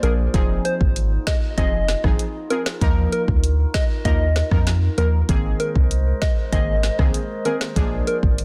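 Dancehall with a hypnotic, sultry mood, cut from a longer piece, built on a deep house drum kit whose deep kick and woody snare sit up front with vintage 12-bit sampler grit, under a punchy sine sub bass with a pitch-drop attack. A soft struck FM synth lead carries the melody with a round, warbling tone through chorus, tremolo and delay, while a detuned sawtooth synth brass stab adds brassy, filter-plucked accompaniment. Beneath them, a glassy, ethereal glass harmonica holds sustained chords that pump with sidechain, moving from Fm7 through Ebsus2 and Abadd9 to Bb7 in a dry, dense, heavily limited mix.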